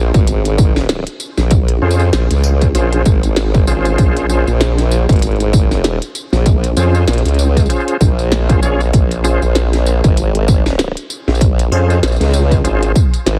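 Squashed like a heavily compressed radio broadcast and dusted with vinyl crackle, this swaggering, gritty glitch hop excerpt swings its sixteenths over an up-front, wobbling sawtooth-and-sine bass shaped by a formant filter, chorus and tube saturation, a punchy, tape-warm layered electronic kick, and a glitchy kit of tiny snare, clicky hi-hats and tambourine re-recorded in a small room, while from 1.8 s a reedy, lightly overdriven tonewheel organ with key click and fast rotary speaker adds stabs roughened by vintage 12-bit sampler grit, sidechain pumping and dub echo.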